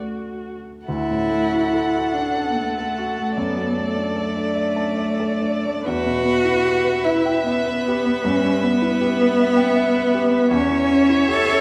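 In a triple metre with free, breathing rubato, this melancholic, yearning slow movement for piano quartet unfolds in a resonant recital hall as a fragment of a longer piece. A rich, focused cello carries the second line close and up front, while an intimate grand piano with audible action noise and a warm, vibrato-laden viola provide accompaniment. From 0.9 s, a smooth, even single violin sings the melody over harmonies that shift from D through E minor toward a diminished chord.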